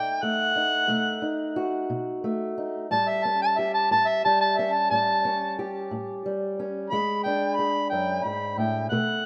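Acoustic country blues at a laid-back, rollicking 60 BPM in 12/8, this short cut from a longer piece features a mellow, vintage harmonica soloing up front in a jazz style with light vibrato, soft attacks and scooped notes, over a dark, boxy fingerpicked ladder-braced acoustic guitar moving through B7, A7 and E7, all set in a lush hall reverb with a rough home-demo feel.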